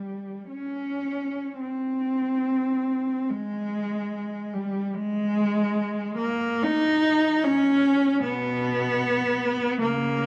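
A lone bowed cello, warm and expressive with vibrato and portamento, wanders in free time between B2 and Eb4 through this meditative, yearning classical fragment cut from a longer piece, set in a moderate recital-hall reverb with a dark production and lossy compression artefacts.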